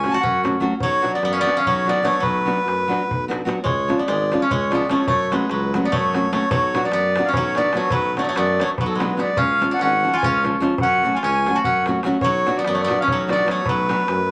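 Reedy single-reed accordion leads this bittersweet, restless Balkan wedding-band piece, its dry tuning sounding clear and up front with a boxy small-room character as it carries the melody between A4 and A5. Beneath it, a koto played with fingerpicks adds a woody second line, while a fingerpicked nylon-string guitar supplies small-bodied accompaniment complete with audible finger squeak. A mellow tuba with light vibrato anchors the bass in a classical style, and a clay-shell darbuka with natural skin is struck with hard hands to keep the pulse. The tune moves briskly at 294 BPM in eighths in 7/8, set in B dorian sharp4, cycling through F#m, Bm and C# before returning home. All five parts play together from the start of this cut from a longer piece, bathed in a wet studio reverb that gives the ensemble a lively, enclosed glow.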